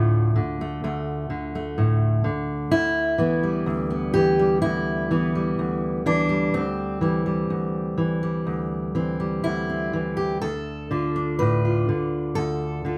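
Played rubato around 62 BPM in 4/4, this haunting, melancholic folk fragment, cut from a longer piece, features a solo fingerpicked steel-string dreadnought acoustic guitar in D dorian, tuned to A4 = 439 Hz. The guitar sits up front with a full-bodied tone spanning D2 to B4, and audible finger squeaks are caught in the moderate reverb of a large studio. Over its 13 seconds the harmony moves from Dm through Em/D and C/D over a D bass before settling back on Dm at 10.4 seconds.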